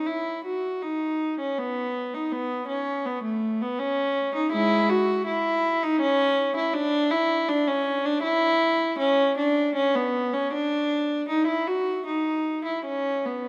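Set in a moderate concert-hall reverb, this radiant, serene 13.5-second excerpt of a baroque-style suite movement in 3/4 features a single unaccompanied viola, bowed up front in period style with a gut-string, reedy tone, a smooth top and light vibrato, moving with unhurried rubato.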